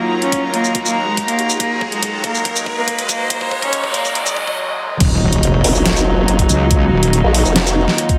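A bright, morphing wavetable pad, a distant, reedy chamber string section and an electronic riser open this menacing wobble dubstep piece at 141 BPM in half-time Eb minor, while a dark, airy-bowed solo cello carries the melody over an overdriven dubstep kit with a deep snare and a knocking electronic kick, until a noise sweep and impact usher in the drop at 5.0 s. There an up-front, saturated sawtooth wobble bass comes in, joined at 5.6 s by a formant-filtered pulse-wave wobble bass, the whole mix squeezed into a heavily compressed, radio-like sound with plate reverb.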